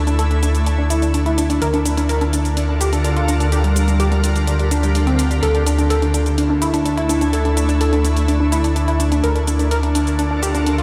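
Driving yet expansive, this progressive house passage in D minor moves at 126 BPM in a straight 4/4 and is cut from a longer piece. A shimmering ambient pad holds sustained chords throughout, its detuned, granular texture bathed in chorus and its own reverb, with a slow attack and long release lending an ethereal, octave-up sheen. Alongside it, a glassy wavetable pluck plays crystalline arpeggios with a fast attack and decaying tail, treated with chorus and dub echo. Anchoring the low end, a fat analog bass sits up front on D2, its saturated, nasal sawtooth tone moving under a filter sweep. Electronic hi-hat and shaker enter at 0.1 seconds, a layered, quieter drum part set in studio reverb. The harmony alternates between Dsus2 and Gm7/D, ending on a rootless Gm7/D at 9.2 seconds, and the whole mix is heard played through a big sound system in a bare stone room with light reverb.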